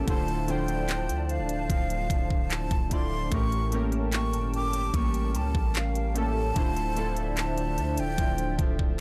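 A straight 74 BPM trap pulse of knocking kick, crisp hi-hat and handclaps sits up front, with a deep, sine-toned 808-style bass that hits fast and decays long beneath this moody, longing contemporary R&B excerpt in D minor, moving from Dm9 to A7b9 and back. Warbling, detuned analog keys with a chorus shimmer play the accompaniment, while a small fingerpicked nylon-string guitar with tape echo arpeggiates in the background beside a hollow, flute-like pad that swells with a slow attack and sustains under ensemble chorus. On top, a breathy jazz flute with lifted highs and tape echo carries an expressive, straight-toned melody between F5 and D6 in a dry, close-sounding mix.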